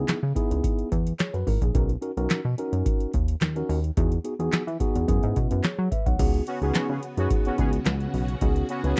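This 9-second excerpt of early-eighties boogie funk sets a late-night, funky mood at 108 BPM, opening with a mellow tine electric piano carrying the chords, clean and up front, as if heard through its built-in speakers. A chorused synth bass sits alongside it from the start, glossy and retro, its pulse-wave and sawtooth tone shaped by a filter pluck and ring modulation. From 0.1 seconds a booming analog drum machine drives the groove with a deep kick, a tonal snare, handclaps, metallic hi-hats and a crash cymbal, all tape-warm and placed close. The harmony moves from C#m7 through Bmaj7, Emaj7 and F#9sus4 before settling on C#7sus4 at 6.2 seconds, where a shimmering string machine enters with slow-attack violin chords under an ensemble chorus. Just after, at 6.5 seconds, a bold, fat analog synth brass adds a second line with a filter sweep. The whole recording is dry and close, in the manner of a 1970s-style studio with little reverb.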